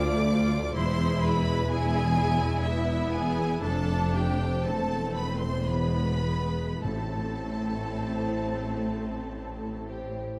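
Close, detailed microphones and a moderate scoring-stage reverb give this short excerpt from a slow, elegiac romantic orchestral movement an intimate yet spacious sound, set in A minor and 3/4 at a rubato 48-63 BPM. A smooth violin section carries the yearning melody with vibrato over a second violin line in the background, focused bowed violas, and a bass of lush cellos and bowed double basses, while a very quiet concert harp rings with thumb-plucked arpeggios. Timpani played with medium mallets sound on A from 6.8 to 8.6 s, close and dry in the background, as the harmony arrives on A minor.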